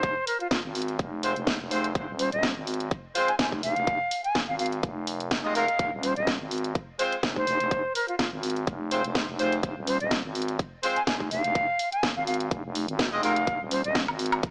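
Bass house at 125 BPM in F minor, aggressive and bouncy, where an airy, vibrato-laced silver concert flute carries the melody through 12-bit sampler grit and tape echo over a growling, thick FM bass with sidechain pumping, a punchy electronic kick and a garage kit of cracking snare, hi-hat and woodblock, while a smooth-topped horn section adds filtered, pumping stabs from 1.2 to 13.3 seconds, all in light digital ambience with a small-speaker sound.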